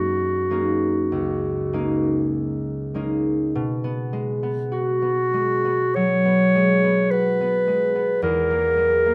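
Rubato phrasing floats over a slow 4/4 pulse of roughly 47-54 BPM in this short impressionist classical duo for clarinet and harp, cut from a longer piece. The mood is pastoral and luminous, opening in F# major on an F#6/9 chord before shifting to B major at 3.6 s, where a B6 harmony takes over and an E(#11) colour arrives at 8.2 s. The clarinet carries the melody between F#4 and C#5, its close-miked, punchy tone sitting clear and up front in a solo classical style. Beneath it, the concert harp supplies fingerpicked accompaniment from C#2 up to F#4, acoustic and ringing, also placed near the listener. A light reverb gives both parts a gentle sense of space as they play together from the start through 9.1 s.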